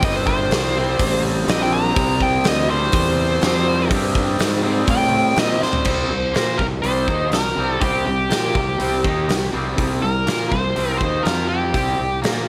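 Lightly reverberant and raw, this raunchy, driving blues rock and southern rock power-trio excerpt at 123 BPM puts a dark, nasal lead guitar with a parked wah and slapback echo up front, soloing until 5.9 seconds, over a bright, double-tracked garage guitar riff, a growly, fuzz-soaked fingered bass and a punchy, mid-forward rock kit in a stone room whose drum fill at 5.6 seconds leads into the second section, where the harmony shifts from C5 to F5 at 11.3 seconds before returning to C5.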